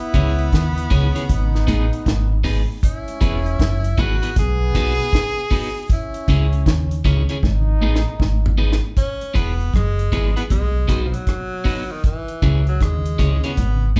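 Bright tenor saxophone with vibrato and a clear trombone open this sunny roots reggae excerpt over a dry, dark drum kit with a high-tuned snare and tight kick, joined almost at once by a round, up-front fingered dub bass, a slightly broken-up picked electric guitar, and a clean, fingered electric guitar riff in the background carrying spring reverb and tape echo; the trombone drops out at 8.6 seconds, a drum fill from 7.4 seconds leads into a tenor saxophone solo at 9.0 seconds, and the band sounds as if playing live together in one large studio room.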